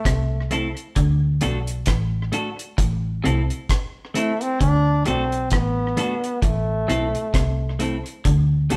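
Laid-back and warm, this short roots reggae excerpt at 66 BPM in D mixolydian, with a swung 4/4 sixteenth feel and Am and D chords, sets a brilliant, close-miked trombone melody with vibrato up front over a dark, round, foam-muted fingered bass, a dry, tight-kicked drum kit of hi-hat, kick and rim click, a clean, picked electric guitar accompaniment entering at 0.5 s, and a bright, twangy, slightly broken-up guitar riff from a small old amp in the background, all captured live in one stone room with moderate reverb.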